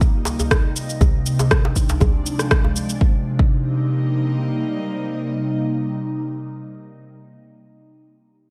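This short cut from a longer afro house piece sits in a light reverb, with the drums set up front. It moves at 120 BPM in a straight 4/4 in C minor, tuned to A4 = 439 Hz, with an earthy, driving mood. A deep, tape-warm electronic kick anchors the groove, joined by a produced electronic shaker and rim click, while a tight, cracking djembe adds close, dry acoustic hits. An ethereal pad of detuned sawtooth and triangle voices with a noise layer holds bright, sustained chords from C3 to Eb4, shaped by slow attacks, long releases, ensemble chorus, a phaser and sidechain pumping. The chords move from Cm7 to Dm7b5 and back to Cm7 as the shaker and rim click stop at 3.0 seconds and the kick at 3.5 seconds. The pad then carries on by itself until the recording ends at 7.1 seconds.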